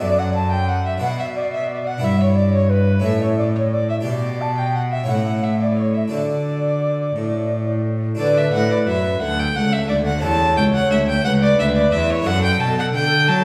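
In a gently rocking, even 6/8, this serene, flowing baroque-style sonata movement moves at an unhurried pace over a continuo foundation. A single period-style violin carries the melody with a gut-string tone, bowed and placed up front, while a wooden baroque flute traces a second line, its pure, mellow sound coloured with vibrato and tongued notes. Beneath them, a lone bowed cello supplies a rich, reedy bass line, also up front, and a French-style harpsichord fills in the accompaniment with brilliant plucked octave strings. The harmony moves through gracefully stepping inversions before settling on the home chord, and a second section begins at 8.2 seconds, leaning on a dominant seventh before turning back toward home. A recital hall reverb gives the ensemble a lingering, airy bloom, as though heard from further back in the room, and the passage is cut from a longer piece.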